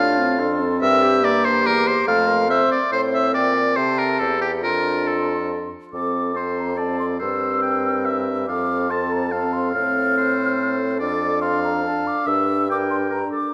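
All five winds of a quintet sound together from the very start of this lively, graceful classical-period movement in a quick triple metre with a straight feel. The concert flute carries the melody high above the others with a pure, hollow tone, vibrato and a soft attack. The oboe sits up front with a clear second line beneath it, while the clarinet's accompaniment stays in the background. The French horn adds mellow accompaniment from a distant, roomy position with light vibrato, and the bassoon supplies a warm, vibrato-touched bass that also sits forward. The opening phrase returns at 5.9 seconds, moving through simple tonic and dominant harmonies before shifting to a minor colour near the end, and a wet scoring-stage reverb surrounds the ensemble until the cut at 13.5 seconds, since this passage is taken from a longer piece.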